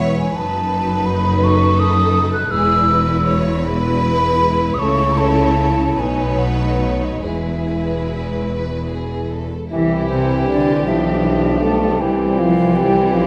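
Classical orchestral music in 6/8 with a rubato feel, lyrical and tender, cut from a longer piece. A violin section carries the melody from the background while a second violin section and a mellow, hollow silver flute, close and pure with vibrato, spin second lines, the flute soaring highest and standing out most clearly. Violas fill in the accompaniment, and a rich cello section and soft-attack double basses anchor the bass with lush, bowed vibrato. At 9.7 seconds the harmony turns to C major and the woodwinds and brass join: a very quiet clarinet and a cor anglais add second lines, a distant bassoon supports the accompaniment, a dark, punchy horn section holds sustained chords, and a clear tuba joins the bass from afar. A moderate stage reverb gives the ensemble a spacious, roomy sheen through to the close at 13.3 seconds.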